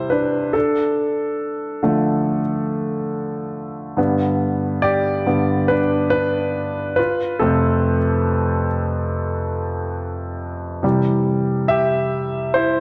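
A straight 4/4 pulse at 70 BPM carries this heartfelt, hopeful pop excerpt in C major, played by a solo concert grand piano across its full 12.8 seconds, with chords moving from C through Dm, G and F before settling back on C at 10.8 s. The piano sits up front and sounds clear and intimate, with deep bass, long sustain, a polished finish and audible action noise. A moderate scoring-stage reverb with a 2.0-second decay surrounds it within a dark production.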